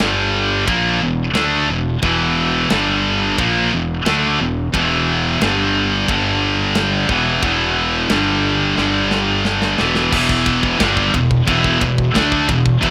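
A rough, dry home-demo sound frames this short, epic heavy metal cut from a longer piece, moving at 89 BPM in E minor with a straight 4/4 feel as riffs shift between G5 and E5 power chords before landing on E minor. A scooped, high-gain guitar sits up front while a second distorted guitar stays in the background, over a growly fuzz bass and a tight acoustic kit with bright cymbals, a medium-tuned snare and a tight kick. A drum fill at 8.8 seconds leads into a new section at 10.1 seconds, where a very quiet double-tracked scooped guitar joins the riff.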